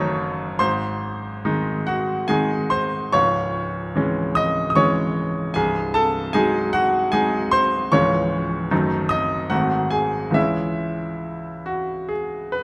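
Bittersweet and stormy, this romantic character piece for solo piano unfolds in C# minor at a flexible 67-77 BPM in 3/4, its rubato pulling and pushing the phrasing throughout. A bright baby grand piano carries everything alone from 0.0 to 12.6 seconds, ranging from B#0 in the depths to D#6 above. Its tone is brilliant and polished, with a short sustain and audible action noise that, together with close, detailed microphones, make it sound intimate and up front. The harmony circles around the home key, moving from a diminished chord over F# through G# and back to C# minor, then leaning on dominant sevenths, including a G#7b9, before settling on C# minor again at 10.4 seconds. A moderate concert hall reverb lends the instrument a sense of space, and the passage is cut from a longer piece, tuned slightly high at A4 = 444 Hz.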